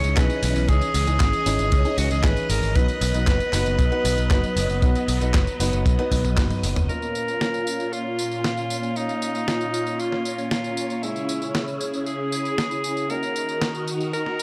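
Nostalgic and danceable, this italo disco excerpt at 116 BPM sets a forceful, scooped alto saxophone melody with tape echo over swirling phased string-machine chords, boxy, worn baby grand piano stabs with 12-bit sampler grit and a filter sweep from 6.9 s, a growly picked electric bass and tight kick, the kick dropping out at 6.5 s during a drum fill and the bass at 6.9 s, and a clean 12-bit drum machine with a fat snare, handclaps, hi-hat, tambourine and toms, all in a dry, gritty hardware sound moving from C#madd9 and B to A#m, C#m and D#m.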